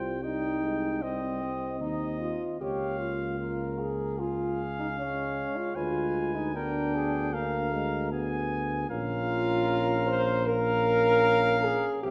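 Wet recital-hall reverb surrounds this classical brass quintet, a 12.1-second fragment cut from a longer piece with a heroic yet grave mood. The clear cornet carries the melody, while the mellow, close-miked flugelhorn sings a second line beneath it with light vibrato. The warm French horn sounds distant and roomy, adding light vibrato to its accompaniment, and the euphonium supplies further accompaniment from the background. The smooth-topped tuba holds down the bass as all five parts play together from start to finish. The harmony moves from C minor through D-flat and a D diminished seventh to B-flat minor over a straight 4/4 feel.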